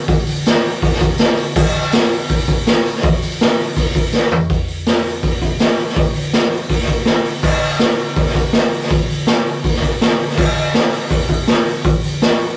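A straight 4/4 rock beat drives this short excerpt at 163 BPM, played on a raw garage drum kit with kick, snare, hi-hat, toms and crash cymbal. The mood is raw and swaggering, with the kit sitting up front and sounding gritty and mid-forward, its boomy kick and medium-tuned snare coloured by saturation and a rolled-off top. A jingly tambourine runs alongside from 0.1 seconds, placed very quietly in the mix. A drum fill at 4.1 seconds carries the groove from the opening passage into the longer second stretch that begins at 4.5 seconds. The sound is that of a rough rehearsal-room recording, dry with little reverb and warmed by saturation, and the excerpt is cut from a longer piece.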